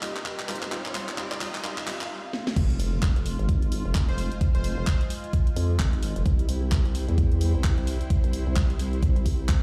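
Driving at 130 BPM in 4/4 with a 59% swing on the 16ths, this aggressive, bouncy bass house excerpt in F minor opens with a build-up where the house drum kit's cracking snare, handclaps, hi-hat and crash cymbal fill the bar over a background riser and swell. A dark analog pad holds moody, detuned chords under chorus and sidechain pumping. An earthy chamber string section adds a bowed, lightly vibrato-laced texture, also pumping. A bold, nasal orchestra-hit-like synth stab sounds through the opening 2.0 s, bright and punchy with digital delay. At 2.6 s the drop lands on an impact, and an overdriven, knocking electronic kick arrives up front alongside a vowel-sweep wobble bass, nasal, saturated and resonant through its formant filter, moving through Fm7 toward C. Briefly at 4.1 s an airy, dreamy lead holds a single C5 with vibrato, cassette-tape softness and delay, all set in a large room with a studio reverb.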